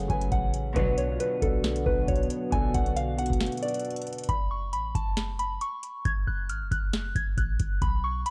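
Trap-flavoured hip hop at 136 BPM in a half-time feel, this brooding, eerie fragment is cut from a longer piece and rests on F#madd9 before moving to Bm at 0.8 seconds. A soft, pure FM synth bell carries the melody up front from A4 to G#6, shimmering with chorus, low-pass filtering and analog delay. A dark, boxy concert grand piano accompanies through 4.3 seconds, while a deep, detuned analog pad treated with chorus and phaser sits in the background for the same stretch. A clean, boomy 808-style bass with sine-like roundness holds the low end between F#1 and B1. The booming analog drum machine, overdriven and roughened with vintage 12-bit sampler grit, pairs a deep kick and crisp snare with metallic hats. A brief reedy stab from a gut-string ensemble with analog delay flickers in around 0.8 seconds, and after a break from 3.4 seconds the harmony drops away, leaving bell, bass and drums. 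The dry, gritty hardware recording carries transformer saturation and a touch of digital ambience.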